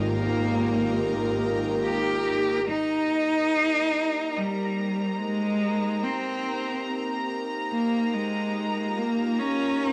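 A slow, straight 3/4 pulse at 71 BPM carries this luminous, serene ambient passage, cut from a longer piece. A clear, smooth solo cello sings the melody up front with vibrato, touched by analog delay and cassette tape, over an airy, breathy pad with chorus that holds sustained chords and fades in from 2.6 s. The harmony moves from Abmaj7sus2 to Ebadd9 at 2.6 s, where a distant, bowed double bass section drops out, while a biting violin section holds a high, intense texture throughout, all within a wet reverb and the soft grain of a home cassette recording.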